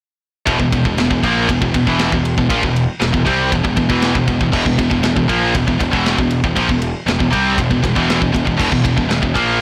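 Epic and relentless, this heavy metal excerpt drives at 118 BPM in a straight 4/4, built on a single E5 chord in E phrygian and cut from a longer piece. A bright, double-tracked high-gain guitar sits up front with its distorted riff, while a second overdriven, cranked stack guitar plays a riff further back, and a growly, fuzz-soaked picked bass anchors the low end. A tight acoustic kit with a medium-tuned snare, tight kick, crash and ride plays from 0.5 seconds to 9.5 seconds in a studio room, all inside a blown-out, overdriven mix with light reverb.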